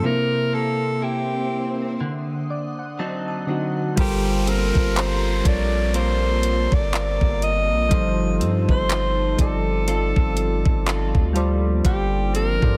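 Swung sixteenths at a slow 61 BPM set the pace of this moody, late-night contemporary R&B piece, where a bright, jazz-style alto saxophone with delay and scooped notes sings over round, chorused electric-piano-like synth keys, a glassy, sidechain-pumped FM pad, lush chorused arpeggios from a clean direct-recorded electric guitar, and a background swell and downlifter, until a knocking trap kit of kick, hi-hat and handclaps arrives at 4.0 s with a deep, sine-toned 808 bass as the harmony settles into G minor.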